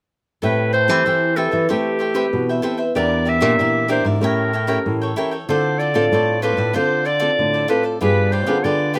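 A bright clarinet carries the melody up front, its soft attack and vintage, classical-style tone giving this short samba fragment a yearning yet lively character. Beneath it, a crisp, picked cavaquinho and a small, warm, fingerpicked nylon-string guitar fill out the accompaniment, while a second nylon-string guitar, thumb-plucked with a dark, fresh-stringed sound, holds down the bass up front. All four parts play together from 0.4 s through 9.0 s in a single passage cut from a longer piece. The harmony moves from Am9 through Em7b5 and A7b9 to Dm7, landing on G7b9 at 8.0 s. The sound is dry, with the rough feel of a home demo mix.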